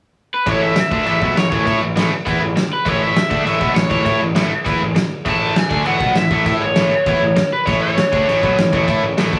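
Rebellious and upbeat, this short punk rock excerpt charges along at 200 BPM in a straight 4/4, sitting in A major. A crunchy overdriven guitar carries the melody from 0.3 seconds, picked and up front, ranging from B4 to A5 just before the rest of the band crashes in at 0.5 seconds. Beneath it, a tight distorted guitar, double-tracked and bright, hammers out the riff between A2 and A4. A fuzz picked electric bass adds a growly, overdriven low end from A1 to A2, while a loose indie drum kit drives things with a tight kick, a medium-tuned snare and dark crash cymbals, all within a pumping small room. The whole take has the rough feel of a rehearsal-room recording, glued together by a moderate small room reverb.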